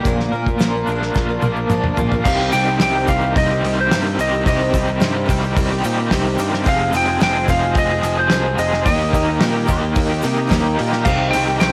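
Folk rock with a heartland rock lean at 109 BPM in C minor, this wistful, reflective cut from a longer piece sets a double-tracked, overdriven garage guitar riff with tremolo and a cloth-damped, thuddy drum kit up front over a growly picked electric bass, a shimmering, octave-doubled twelve-string acoustic and a grainy tube shaker in the background, with a drum fill at 1.2 seconds leading to a clean, twangy lap steel slide melody entering at 2.2 seconds and a very quiet, slightly broken-up electric guitar through a small old amp adding a brief second line at 9.7 seconds, all in a home cassette recording with light small-room reverb.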